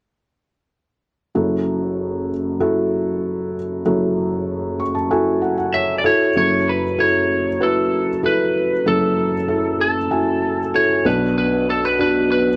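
A straight 4/4 pulse at 96 BPM carries this bittersweet yet driving piano-driven pop excerpt in F# minor, tuned slightly low to A4 = 438 Hz. A felt-muted upright piano, soft, mellow and intimate, sits up front as the accompaniment from 1.4 s, spanning from the deep bass register to high treble over an opening F#m7 harmony, and it plays a short felt fill from 4.5 s. At 5.7 s a lightly driven electric lead guitar enters with the melody, its bright, twangy, slightly broken-up picked tone compressed and placed close alongside the piano within a narrow upper-middle range. The passage shifts into a second section at 6.4 s, shortly after the guitar arrives, with a Bm chord appearing near the end. The sound is dry and close in the manner of a 1970s studio, touched with light reverb and lossy compression artefacts.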